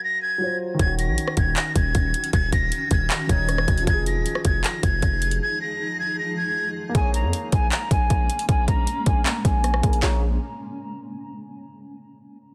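Melancholic, menacing half-time trap hip hop at 156 BPM in Bb minor, this excerpt opens on a breathy jazz flute with vibrato and tape echo over a dark, mellow baby grand piano; a distorted, saturated 808-style bass and a trap kit with a hard-clipped kick, a sharp snare, metallic hats, claps and rim clicks join at 0.8 seconds; a cloudy, detuned granular pad blooms in at 1.9 seconds; and after a break, a filter sweep runs from 6.9 seconds under a dense, heavily limited master.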